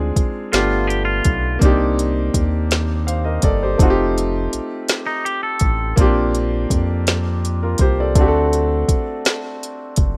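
Slow six-eight R&B with a yearning, sultry mood, taken from a longer piece. A clear concert grand piano carries the accompaniment up front, its natural tone showing deep bass and long sustain across a progression that moves from Dm7b5 and G7 through Cm9, F7 and Bb6 before landing on D7. Beneath it, a round analog bass holds the low end, blending sawtooth and sine colours with ring modulation into a dark, evolving, sustained sound. A produced electronic drum kit sits forward with a soft kick, woody snare and smooth hi-hats, all carrying a tape-warm sheen. A bright, twangy, clean electric guitar adds brief picked second lines, first at 0.5 seconds and again at 5.1 seconds. The mix is dry, with the rough character of a home demo.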